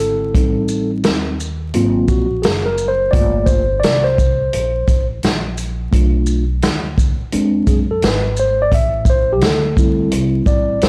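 Nocturnal and mellow, this jazz-hop excerpt moves at 86 BPM in 4/4 with a swung sixteenth-note feel, its clean, up-front tine electric piano taking a solo across the whole 10.9 seconds over jazzy changes from Am7b5 through G#13, Gm7 and E7b13 to Am7. A woody, growly pizzicato upright bass sits underneath, and a vintage acoustic drum kit joins at 0.3 seconds with a punchy kick, medium-tuned snare, hi-hat and shaker. Light studio reverb, a dry, gritty hardware sound and vinyl crackle give it a late-night lo-fi character.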